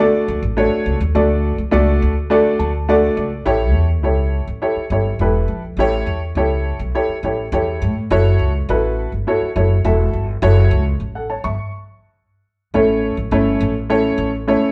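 A straight four-beat pulse drives this joyful, uplifting fragment of uptempo 1960s-style soul, where a slightly detuned, woody upright piano sits up front beside an equally forward, thumpy pizzicato upright bass on gut strings; the piano slips in a fill at 2.3 seconds before the band hits a stop at 11.6 seconds, as the chords move from D through A7 and F#m7 to land on A, the duo heard live in one room with moderate reverb and a soft, darkened top end.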